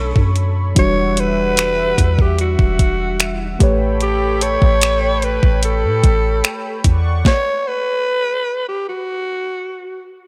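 Late-night and moody, this contemporary R&B fragment, cut from a longer piece, moves at an unhurried 74 BPM in 4/4 with a straight feel. A raspy alto saxophone carries the melody up front, its gritty tone capped by a smooth top, with vibrato and a tape echo trailing its pop-style lines. Beneath it, muted felt-like synth keys add dark, intimate accompaniment with a chorus shimmer, while a detuned analog pad holds sustained chords with a soft attack and long release. A deep, round 808-style bass sits forward in the mix, and a crisp 8-bit drum machine punches through with overdriven grit, its thumpy kick, snare, hi-hat and finger snaps entering at 0.2 seconds. The harmony drifts from Bm9 through Em9 and A9 to Dmaj7 in a dry sound, and after the band stops around 7.3 seconds the saxophone lingers alone until 10.1 seconds.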